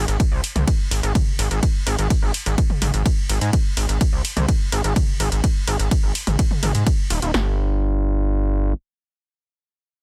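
A gritty, aggressive synth bass drives this dramatic, melancholic melodic techno excerpt at 126 BPM, its saturated sawtooth and wave-folded tones snapping with a resonant filter pluck and pumping against the sidechain from Eb1 to Ab2. The drop runs from the start to 7.3 s, driven by a punchy analog drum machine: kick and snare sit up front on one part, while hi-hat, ride cymbal and toms pump on another, both carrying a tape-warm tone. The drums fall away by 7.5 s, leaving the bass alone until 8.7 s in a dense, heavily limited master with digital ambience.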